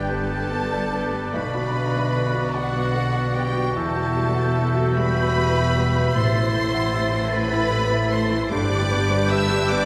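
A lush violin section carries the melody high above this moving, uplifting cinematic passage in a slow, rubato 6/8, its expressive vibrato floating over a full orchestral bed. A second, smoother violin section plays its own line beneath it, and a clear solo oboe adds another line, while a bright clarinet and an airy flute ensemble contribute further lines from further back in the mix. A felt-muted upright piano gives soft, intimate accompaniment alongside a rich viola section, and a concert harp rings out very quietly in arpeggios. Cellos and double basses anchor the bottom with a focused, close depth, under chords that move from G through Bm, Emadd9 and Am before returning to G at 8.5 seconds. Everything sits in the long, wet bloom of a church-like hall, giving this excerpt from a longer piece a spacious, devotional glow.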